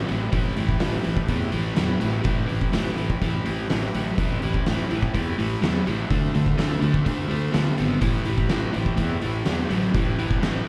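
A crunchy, double-tracked overdriven guitar riff with slapback echo drives this smoky, brooding blues rock and southern rock excerpt at 125 BPM in A minor, backed by a growly fuzz bass and an oversized, low-tuned drum kit with a fat snare and punchy kick sitting up front. Behind them, a thick overdriven tonewheel organ holds sustained chords through a slow rotary speaker, moving from Am7 to Dm7 at 6.1 seconds and back to Am7 at 8.0 seconds. The whole band comes across as a live club gig heard through the venue's PA, with a small room ambience and club reverb.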